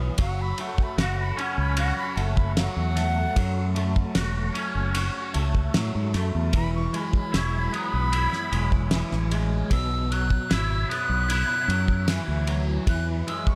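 A dry, close-sounding psychedelic rock fragment in F# minor at 76 BPM, trippy and hypnotic, where an airy, reedy concert flute with slapback echo solos throughout over a twangy, clean electric guitar riff run through a rotary speaker and double-tracked, a round, up-front fingered bass, a damped 70s drum kit with a fat snare, tight kick and dark ride cymbal, and a buzzing, shimmering tanpura drone in the background, as the chords move from F#m to E, Bsus4 and back to E.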